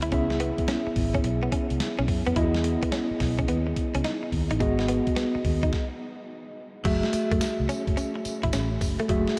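R&B in a new jack swing style, this slick, bouncy excerpt moves at 107 BPM with a swung sixteenth feel in F# dorian, its chords running from C#m7 through Emaj7 and G#m7 before settling on F#m9. A mellow tine electric piano sits up front alongside a gritty, compressed sampler-style drum kit with a thumpy kick, hi-hat, snare, tambourine and crash, while a dark, round muted fingered bass anchors the low end and a bright, twangy direct-recorded guitar with subtle chorus carries the riff. The whole mix is soaked in a dreamy cathedral reverb, with a brief stop from 5.7 to 6.8 seconds before the closing section on F#m9.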